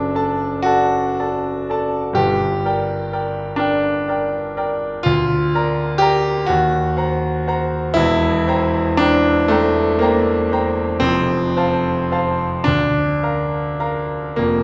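A clear concert grand piano opens on a D/F# chord and settles into G minor, unfolding a dreamy, tender romantic nocturne in 6/8 at a slow, rubato 32-43 BPM, counted in dotted quarters. Up front and natural, with a deep bass reaching down to E1 and a range up to Bb5, the piano turns toward Bb major from 5.1 s, passing through Cm7b5/Eb and C7/E to F and Bb/D. The sound carries the wet reverb of a church or concert hall, and this passage is cut from a longer piece.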